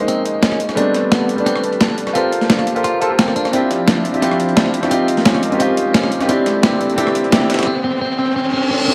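Liquid drum and bass with a rolling, melancholic feel, this build-up is led by a clear, up-front concert grand piano through a low-pass filter and tape echo over minor eleventh chords, with an airy, breathy chorused pad in the background, a gritty overdriven breakbeat kit of hi-hat, rim click and snare alongside a faint, tape-softened soul kit, clean electric guitar arpeggios with digital delay that ring on beside the riser and reverse cymbal after the rest drops out at 7.7 seconds, and an electronic riser from 6.3 seconds capped by a reverse cymbal, all set in a moderate scoring-stage reverb.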